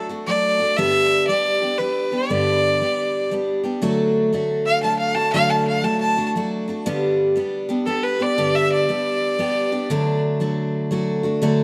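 A clear, intense bowed fiddle leads this nostalgic, heartfelt country track, singing the melody up front with light vibrato and a smooth top before falling silent at 10.2 seconds. Beneath it, a bright, full-bodied picked steel-string dreadnought guitar with fresh strings and audible finger squeak carries the accompaniment in D major, moving between D and G chords and continuing until 11.6 seconds. At 118 BPM in a swung 3/4, the piece, cut from a longer performance, sits in a moderate plate reverb.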